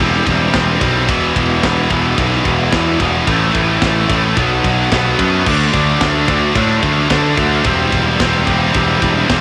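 A straight 4/4 pulse at 110 BPM drives this aggressive, epic heavy metal fragment in E minor, where a tight metal drum kit with a medium-tuned snare, tight kick, crash and ride enters at 0.3 s under a rolled-off, cassette-tinged top. Up front, a bright, high-gain guitar riff with tape coloring sits beside a growly, fuzz-overdriven picked bass, while a scooped high-gain guitar riffs in the background and a double-tracked heavy guitar stays very quiet. The dry home-cassette recording moves through C/E, Em, Am, Bm and D before returning to C/E.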